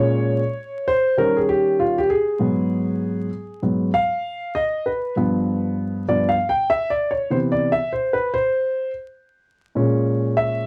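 A dark, mellow concert grand piano plays alone from the start, sitting up front and intimate with its action noise audible and a deep low end, moving through jazzy chords such as Bbm7, Eb7 and Abm7 before landing on Cmaj7 at 7.3 seconds. The cool, smoky hip hop groove carries a swung sixteenth-note feel in 4/4. Vinyl crackle and a modest small-room ambience give this short excerpt a vintage, lived-in character.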